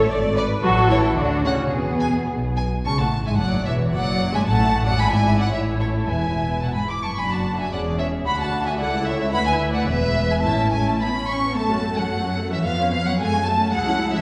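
Heard from further back in a reverberant concert hall, this lively, spirited classical-period string orchestra excerpt sets a rich, vibrato-laden violin section with a smooth top carrying the melody from 0.4 s above a focused second violin line, an even viola accompaniment, a distant, expressive cello section in the background and a soft-attacked double bass section placed up front, all moving with a flexible rubato before turning toward F#m at 11.6 s.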